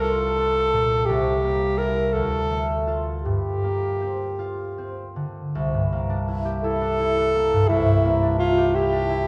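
A wet recital-hall reverb surrounds this short, mysterious and wistful impressionist duo in G dorian, heard as a cut from a longer piece. It moves in a rubato 6/8 at around 51-58 BPM by the dotted quarter. A clear, soft-attacked alto saxophone sings the classical-style solo melody up front, close-miked, while a mellow, ringing concert harp, fingerpicked and also up front, supports it with chords such as Bbmaj7/C, C13 and Gm11 before settling on Gm6/C near 7.7 seconds.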